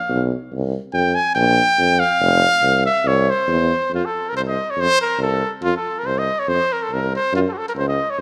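A close-miked trumpet with light vibrato leads this bittersweet, fiery Balkan folk fragment in a straight 2/4, playing in a classical style and taking a solo over the first 3.9 seconds. Beneath it, a present, up-front tuba carries the bass line in the same classical manner. A moderate recital-hall reverb gives both horns a rounded sense of space as the music shifts into a new section at 3.9 seconds.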